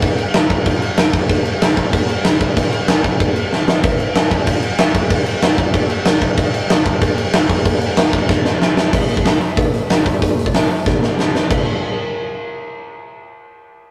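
This punk piece charges ahead at 189 BPM in a straight 4/4, with an energetic, rebellious mood. A big acoustic rock drum kit carries it, sitting up front with a dark, smooth tone, a fat snare and a punchy kick, plus crash cymbal and hi-hat. Drum fills arrive around 3.5 seconds, near 8.3 seconds and again near 10.9 seconds, and the later two lead into new sections. The drums play until 11.6 seconds, and the piece runs on a little past that point. The sound is a rough rehearsal-room recording with tube saturation and little reverb, so it comes across as raw and close, cut from a longer piece.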